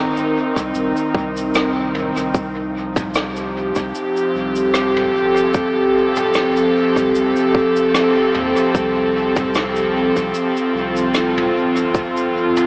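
An airy, breathy pad with a detuned, warbling chorus shimmer opens this spacious, deep ambient dub passage, cut from a longer piece, holding sustained chords that move from Cm7 to Fadd9 at 2.3 seconds over a round, sine-like sub bass. A vintage brush kit with rim clicks, shaker and toms enters at 0.2 seconds with a rolled-off top and dub echo, and a tight, tape-toned electronic kick sits up front from 0.6 seconds, all in a gently swung 4/4. The dreamy mix is soaked in a lush hall reverb and filtered to an AM radio sound.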